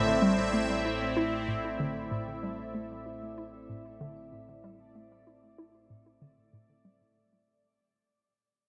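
A straight 4/4 pulse at 95 BPM carries this hypnotic, expansive stretch of sequencer-driven ambient space music in A minor, cut from a longer piece. It rests on a single A minor chord. A bouncy, warbling square-wave pluck with chorus and delay repeats its vintage riff against an up-front sweeping pad of airy, detuned sawtooth chords bathed in shimmer reverb. Very quiet metallic vibraphone arpeggios, a bubbling resonant texture of random filter steps and a background analog drone with pulse-width modulation sit beneath them, all inside an echo-heavy plate reverb while a filter sweeps the synth arpeggio sound and the drone and the whole passage fade out over its 7.2 seconds.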